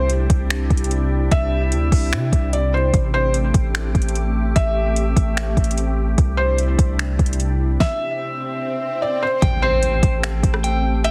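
Melancholic and spacious, this atmospheric cloud-rap excerpt moves at 148 BPM in a half-time feel in A minor, with a muted upright piano carrying a soft, intimate melody through tape echo over a glassy FM pad that pumps against the sidechain and a deep, mellow 808-style bass sustaining long notes beneath. An overdriven R&B drum kit sits up front with a soft kick, fat snare, metallic hats, finger snaps and rim clicks, and the harmony moves between Cadd9 and Am7. After a stop at 7.8 seconds, an electronic swell builds into an impact at 9.4 seconds, where a slightly broken-up electric guitar enters with picked arpeggios through tape echo, all within a heavily compressed, radio-like sound and light digital ambience.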